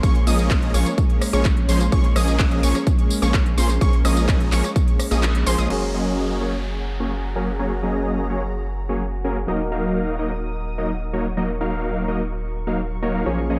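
This excerpt of euphoric, powerful festival progressive house at 127 BPM opens in the middle of a drop: a punchy, up-front electronic kick and a big-room kit with crisp hats, claps, rim click and tambourine drive huge, bright, detuned supersaw chords and a deep, saturated sub bass. Around them, a lush pad and a detuned unison pluck arpeggio sit in the background, both pumping with the sidechain over a Bbm7 chord. The kick stops at 4.9 s, and at 5.7 s the pluck and kit fall away as a warm concert grand piano and an electronic downlifter enter over Gbadd9, then Ebm from 9.5 s, all in a dark production with light reverb.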